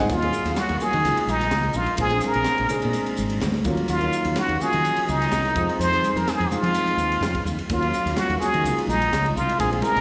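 A straight 4/4 pulse at 126 BPM drives this funky, intense electric jazz fusion excerpt in Eb dorian, cycling through chords such as Ebm9, Db69, Bb9 and Fm7, with a crisp fusion drum kit of punchy kick, high-tuned snare, hi-hat and ride sounding gritty and saturated in a pumping small room, while background congas add thick-skinned, vintage colour. A woody fretless electric bass, round and hollow-bodied with subtle chorus, anchors the low end as a dark, boxy concert grand piano with long sustain and slapback echo fills in the harmony. Up front, a brilliant plunger-muted trumpet plays the jazz-style solo melody with wah-wah, vibrato and scooped notes, its slapback and tape echo set against light recital-hall reverb in a live gig heard through the venue's PA.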